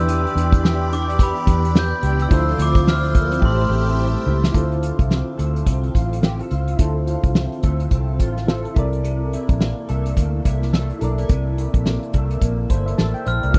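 Wistful and mellow, this excerpt of swung indie and bedroom pop in D minor moves at 107 BPM, with an up-front, punchy kick and fat snare from an unplugged drum kit played with bundle sticks, and a dark, round, foam-muted electric bass holding the low end. A slightly broken-up electric guitar through a small old amp and soft, phaser-tinged synth keys with a cassette-tape hue carry the chords, while a bell-like glockenspiel on rubber mallets rings out the melody through lush chorus and slapback echo until 4.2 seconds and returns briefly at 13.3 seconds. A shimmering string machine of violins sustains chords only until 4.5 seconds, where a drum fill leads into the next section, all captured in a dry, close 1970s-style studio sound.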